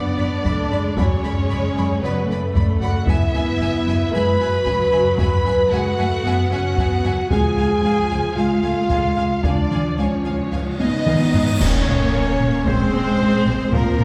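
Driven by close, heavy-stick taiko drums at a straight 113 BPM in 4/4, this heroic, dramatic cinematic orchestral cue sets a dark, distant violin melody over focused viola accompaniment, up-front clear French horn chords, a background second violin line, and lush cello and double bass, while dark cymbals and concert bass drum arrive at 7.3 seconds, a huge, bright cymbal swell and impact mark the shift to a new section at 11.6 seconds, and a pure straight-tone flute adds a second line from 10.8 seconds, all set back in a wet concert hall.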